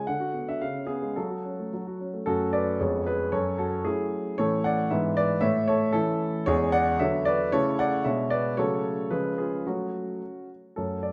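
Playful and elegant, this brief classical-period sonatina fragment in F# minor moves at 113 BPM in a straight 2/4, with a polished, up-front grand piano playing solo from its low E2 to F#5 and ringing with long sustain in a moderate recital hall, its harmony turning from F#m toward A major around 4.4 seconds before settling back on F#m at 9.7 seconds.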